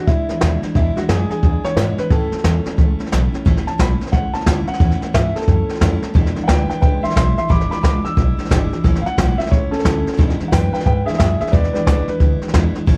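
Retro and upbeat, this swung rockabilly fragment sets a smooth, intimate upright piano with audible action noise and plate reverb over a bright, full-bodied picked steel-string acoustic guitar with finger squeak, a thumpy pizzicato upright bass sitting in the background and an up-front jazz brush kit with a boomy kick, moving between E7 and A chords until the piano takes a solo from 3.5 s, the mix carrying light reverb and a cassette-tape character.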